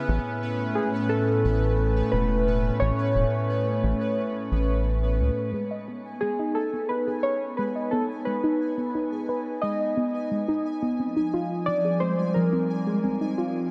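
A hollow, flute-like pad and a faint, pulsing gated texture open this melancholic, cerebral IDM excerpt together, both bathed in chorus and shimmer reverb inside a huge ambient space. A rubbery, bouncy square bass sits dark and up front beneath them, while warbly lo-fi synth keys carry a nostalgic, detuned melody through chorus, shimmer and delay. At 5.3 seconds the bass drops away, and at 5.5 seconds a harp-like synth pluck enters with ringing arpeggios, its chorus, shimmer reverb and tape echo trailing into long releases. From that point a filter sweep moves through both the pad and the pluck as the harmony settles into minor chords, lending the second half a more brooding, introspective cast. The unhurried, straight pulse and long reverb tails keep the mood drifting and reflective until the cut at 13.7 seconds.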